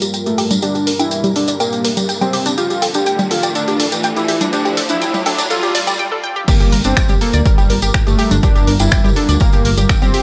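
Melodic techno with a hypnotic, driving pull, cut from a longer piece and opening on a build-up. A deep, moody analog pad holds sustained chords, while a round, bright analog pluck runs arpeggios with chorus and digital delay, and a fat, detuned analog lead carries the melody with vibrato. Filter sweeps move across both the pluck and the lead through this build, an electronic riser climbs from 0.9 to 6.0 seconds, and a punchy analog drum machine patters with congas, crash cymbal, finger snaps, hi-hat and woodblock beside a jingly acoustic tambourine. After a brief break, the drop lands at 6.5 seconds with a punchy electronic kick and a menacing, evolving detuned saw bass that is saturated and shaped by a filter swell. The pad, pluck, lead and bass all pump against the kick, and light reverb lends the mix a digital ambience.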